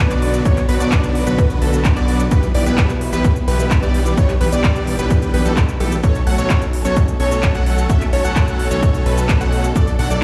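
Emotional and anthemic, this festival progressive house passage in straight 4/4 is cut from a longer piece and sits entirely in one section. A huge, euphoric supersaw lead carries a bright, detuned riff, while a punchy, catchy plucky lead spins arpeggios alongside it, both pumping with sidechain and trailed by delay. Underneath, a fat, thick analog bass holds a low saturated sawtooth tone that pumps along with the leads, and a very quiet studio string section adds smooth, bowed sustained chords with gentle vibrato. The big-room dance kit brings handclaps, crisp hi-hats and shaker from 0.1 seconds, and an up-front, overdriven electronic kick punches in from 0.5 seconds to 9.8 seconds. The drums sound re-recorded in a large room, the whole passage sounds played through a big sound system in a bare room, and a large studio reverb and digital ambience lend the loud mix a spacious, arena-sized sheen.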